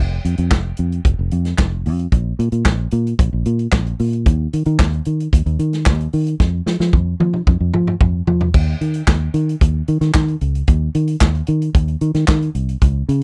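A dry disco cut from a longer piece, driving and danceable in a straight four. A round, foam-muted fingered electric bass sits up front from the very start, and at 0.3 seconds an acoustic soul drum kit joins with a tight kick, a medium-tuned snare, hi-hat, handclaps, toms and crash cymbal, its rolled-off top giving it a warm, roomy character. A drum fill from 6.4 seconds leads into a new section at 8.5 seconds.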